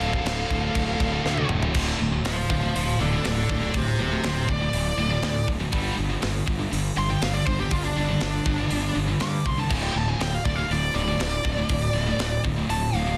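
Heavy metal in D minor at 121 BPM, this short, heavy and aggressive cut from a longer piece opens with a bright, high-gain lead guitar carrying the melody over a darker second lead line that drops out at 1.5 seconds, while two picked rhythm guitars, one scooped, churn out a low riff in the background. A growly, fuzz-overdriven fingered bass sits up front beside a tight acoustic drum kit with a medium-tuned snare and rolled-off top, whose fill from 1.3 to 1.8 seconds launches the lead guitar solo that runs to the end as the chords move from Dm to G5 and D5. The sound is dense and heavily limited, with little reverb.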